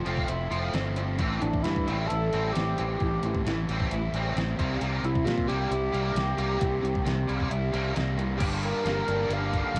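Moody and cool, this short indie rock cut from a longer piece moves at 133 BPM in a straight 4/4, with a lo-fi home-cassette character and a light reverb around it. Two bright, overdriven electric guitars play picked riffs from the start; one sits up front and is thickened by ensemble chorus and tape echo, while the other carries cassette tape grit. A growling fingered electric bass, direct and amped with its own overdrive, sits up front in the low register, and a detuned 8-bit drum machine joins at 0.1 seconds with a thumpy kick, medium-tuned snare, hi-hat and crash, sounding sampler-like and re-recorded in a small room. At 1.4 seconds a hollow, bold lead with an added fifth layer enters, blending sawtooth and triangle tones with a fast attack, sustained notes, chorus, vibrato and tape echo. The harmony moves from Fmaj7 to Am7 and C7, then shifts to Gm7 at 8.4 seconds as a new section begins.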